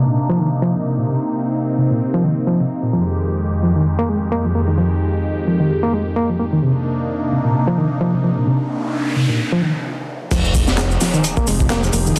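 Dense, heavily limited and dusted with vinyl crackle, this gritty, raw breakbeat fragment opens with a swirling, phased sawtooth pad holding sustained chords and a reedy, worn electric piano riff trembling with fast tremolo, until a noise sweep and sub drop enter at 8.6 seconds and lead into a drop at 10.3 seconds, where a crunchy, saturated breakbeat kit with a high-tuned snare and dark cymbals, a layered garage kit of handclaps, metallic hats and shaker, and a fat, detuned analog bass join in.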